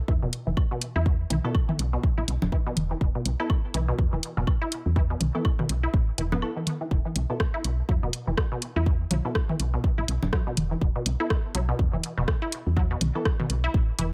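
A squelchy, resonant blip pluck with chorus, tape colour, delay and a filter sweep running throughout drives this sparse, quirky minimal techno cut at 123 BPM with a swung 16th feel over an E5 chord, riding on a round, dark FM bass and a punchy kick that both sit up front, along with bright house hi-hats and rim clicks, dub-echoed electronic woodblock, toms and congas, and crisp, mellow wavetable chord stabs in the background that enter at 1.4 seconds, all in a dry mix with a brief break from 6.4 to 6.9 seconds.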